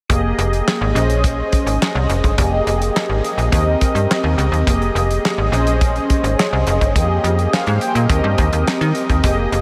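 A slick, late-night slice of early-eighties boogie funk in F minor at 105 BPM opens at 0.1 s with a damped 70s drum kit, its tight kick, fat snare, hi-hat and handclaps sitting dry and up front, alongside a snappy, metallic slap-like FM bass. Mellow synth brass built from detuned sawtooth tones adds round, dark sustained chords with a filter sweep, colored by chorus and phaser, cycling through Fm11, Bbm11 and Cm7/Eb. A huge ambient reverb soaks the mix in a dreamy haze until this cut from a longer piece ends at 9.6 s.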